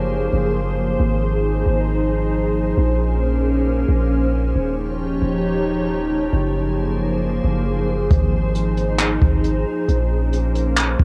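A glassy, warbling FM pad holds sustained chords from the start, its slow attack, ensemble chorus and built-in reverb giving this dreamy, floating atmospheric cloud-rap excerpt in Ab major an ethereal, vintage shimmer, moving through chords such as Gbmaj9#11, Ab6, Bbm9 and Eb9 at 135 BPM in a half-time feel. Underneath, a deep, sine-like 808-style bass sounds long, decaying notes, and at 8.1 seconds a dark, smooth jazz brush kit enters up front with a boomy kick, hi-hat and handclaps and a rolled-off top. The whole excerpt carries the lightly reverberant character of a home cassette recording.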